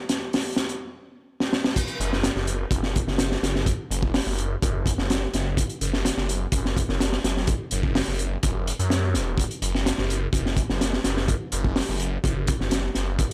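A crunchy acoustic breakbeat kit with a high-tuned snare opens this swaggering, funky breaks cut at 126 BPM, its gritty, dark-cymballed fills building toward the drop at 1.8 seconds. At 2.0 seconds a thick, detuned sawtooth bass enters up front, its sustained notes swirling through a phaser across a low range from E1 to F#2. The dry sound keeps the saturated kit and the bass up front.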